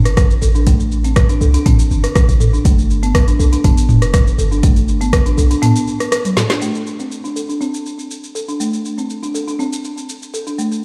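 A straight 4/4 groove at 121 BPM drives this hypnotic, earthy afro house excerpt in A minor, where a deep, overdriven electronic kick and an up-front afro-pop kit of woody snare, metallic hats, rim click, shaker and toms sit over a boomy, sine-based 808-style bass with sidechain pumping that stops at 5.5 seconds, while a rustic, dry folk marimba plays low-pass-filtered, tape-echoed arpeggios from A3 to A4 over Am7 and Gadd9 before a drum fill at 6.2 seconds leads into a new section on Am.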